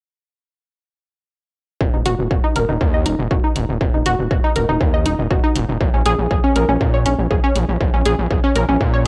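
A home cassette recording with light reverb and a digital ambience gives this dark, driving melodic techno excerpt a hazy, lo-fi finish. At 120 BPM in a straight 4/4, a distorted, layered electronic kick sits up front from 1.8 seconds, carrying a cassette-tape colour. Alongside it, a gritty, aggressive synth bass built from sawtooth, sine and triangle tones with oscillator sync moves between Eb1 and Bb2, saturated and pumping against the sidechain. A lush, punchy unison pluck of detuned sawtooths with a noise layer and a wave-folded edge plays arpeggios between Db4 and Eb5, with a filter sweep, tape echo and sidechain pumping. Metallic electronic hi-hats sit lower in the mix, and after an opening passage with a chordless texture, the harmony settles on B-flat minor at 5.8 seconds.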